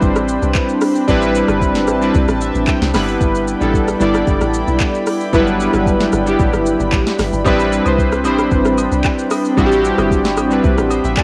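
Late-night and deep, this amapiano excerpt moves at 113 BPM in a straight 4/4 feel in A minor, cut from a longer piece and colored by the soft hiss of a home cassette recording with light reverb. Up front, the analog keys carry the accompaniment with a round, warbling, vintage sawtooth tone, detuned and dressed in chorus and plate reverb, adding a short fill from 2.1 to 3.2 seconds. Beneath them, a breathy, full-bodied pad holds sustained chords with a slow attack and long release, its chorus and ring-modulated shimmer gently pumping against the beat. The log drum bass sits low and dark, each percussive, round note striking fast and decaying, while the electronic R&B kit pushes forward with a soft kick, sharp snare, crisp hats, handclaps, rim click and shaker, all roughened by overdrive and tape. At 7.5 seconds, agogo bells and woodblock slip in quietly in the background as the harmony returns from Em7/G to Am11.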